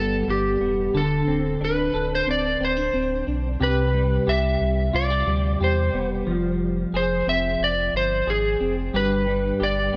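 A dark, slightly broken-up electric slide guitar, played with fingerpicks and bathed in delay, carries the melody up front in this floating, blissful dream pop excerpt at 90 BPM in C major. Beneath it, a clean, fingered semi-hollow electric guitar spins arpeggios through ensemble chorus and delay, while a deep, sustained sub bass with an added octave gives the low end a full, rounded weight. Light digital ambience surrounds the track, and at 3.6 seconds the harmony moves from G and D5 into a dreamier passage of Cmaj7 and Fmadd9 before returning to G.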